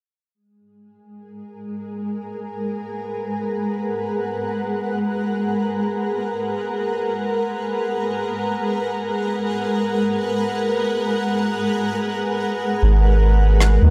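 A hazy, meditative ambient dub excerpt in free time and G# minor opens with a cloudy, detuned granular pad holding sustained G#m7 chords from 1.3 seconds, its blurred, evolving haze bathed in built-in reverb, before a deep, round sub bass enters at 12.8 seconds and a brushed, filtered rim click touches in at 13.6 seconds within an echo-heavy mix.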